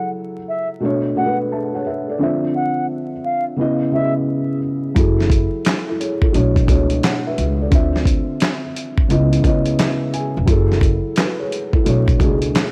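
Nostalgic and melancholic, this lo-fi hip hop excerpt opens with a breathy flute melody, softened by low-pass filtering, cassette tape and analog delay, floating over a felt-muted upright piano with audible action noise until 4.1 seconds, before a woody pizzicato upright bass and a gritty, compressed sampler-style drum kit with handclaps, hi-hat, a thumpy kick and snare enter at 5.0 seconds, the boxy piano adding a fill at 9.1 seconds amid vinyl crackle and a dry, intimate home-cassette sound.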